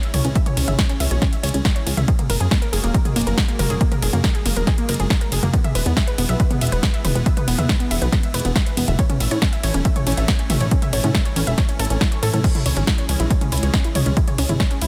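An overdriven electronic kick drum, punchy and up front, drives this bittersweet uplifting trance excerpt in C# minor at 139 BPM, entering at 0.4 s. Around it, a big-room dance drum kit of crash, ride, hi-hat, toms and a punchy snare with metallic hats sits forward with studio reverb, while a plucky analog bass built from sawtooth, square and sine waves, funky and wave-folded, pumps to the sidechain from 0.1 s. A detuned unison pluck spins arpeggios spanning A#3 to C#6, its vintage, warbling tone carried by dub echo and the same pumping motion. In the background, a thick, bright pad with a slow attack holds sustained chords, colored by chorus and phaser. The chords move from C#m through F#add9, E and A before returning to C#m at 12.4 s, all within a dense, heavily limited modern master and digital ambience.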